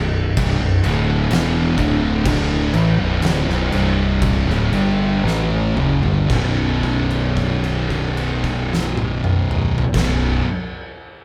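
A straight, heavy 4/4 pulse drags and slows through its opening stretch in this brooding, sludgy stoner and doom metal excerpt cut from a longer piece. Three dark, picked fuzz guitars grind out the riff together: a double-tracked guitar and a thick fuzz guitar sit in the background, while a second thick guitar lies very quiet beneath them. A growling, overdriven electric bass, direct and amped with a warm low end, adds weight far below. An oversized, low-tuned acoustic kit sits up front with a punchy kick, fat snare, dark cymbals and toms, its gritty, saturated sound pumping in a big room, and a drum fill beginning at 5.2 seconds leads the band from a minor chord to a single power chord at 6.3 seconds, held until 9.9 seconds. Light reverb gives the feel of a band playing live together in one room.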